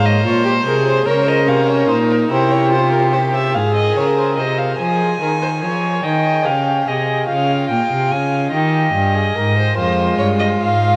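A rich, up-front gut-string cello anchors this driving, serious baroque-style fugue for string quartet, cut from a longer piece, as a nasal, reedy first violin carries the melody over a dark second violin with light vibrato and a close viola with an airy bow that accompanies until 4.8 seconds and returns at 9.8 seconds, the quartet heard in a vast, echoing space with a huge, wet reverb.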